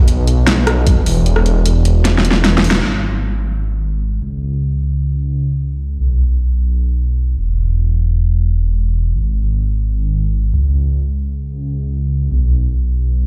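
Bright and lush, this half-time future bass excerpt opens on a drop where a thick, detuned sawtooth bass with chorus and sidechain pumping sits dark and saturated up front, joined by a knocking, overdriven electronic kick at 0.9 seconds. An overdriven pop drum kit of fat snare, hi-hat and rim click, re-recorded in a small room, plays a fill leading into a band accent before stopping at 2.8 seconds. From there the bass carries on alone, all framed by a large studio reverb as if played through a big sound system in a bare room.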